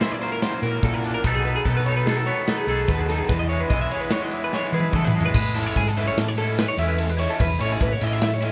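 Set in a straight 5/4, this playful, bright fragment of math rock and midwest emo pairs an up-front acoustic kit with a punchy kick with a clean, picked twangy guitar accompaniment and a double-tracked, overdriven garage guitar riff, while a compressed twelve-string adds arpeggios through a harmonic tremolo. A dark, round hollow-body bass enters at 0.6 seconds beneath chords moving from F#7alt/A# through B9 to Emaj7. A drum fill at 4.5 seconds leads into a new section on Amaj7 at 5.4 seconds, with the band playing live together in one room under light reverb.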